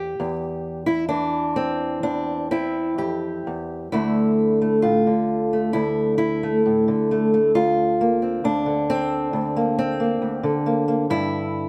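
An old ladder-braced acoustic guitar, fingerpicked and up front, carries this brief solo folk passage from 0.0 to 11.7 seconds, cut from a longer piece. Its tone is dark and boxy, with the character of old strings, and its range runs from D2 up to G4. The music sits in D minor at a rubato 66 BPM in 4/4, giving it a haunting, intimate mood. The harmony opens on Cadd9/E, then moves to Dmadd9 at 3.9 seconds as a new section begins, passing through Bbadd9/D before settling on G5. A light reverb frames the woody instrument, keeping the sound close and personal.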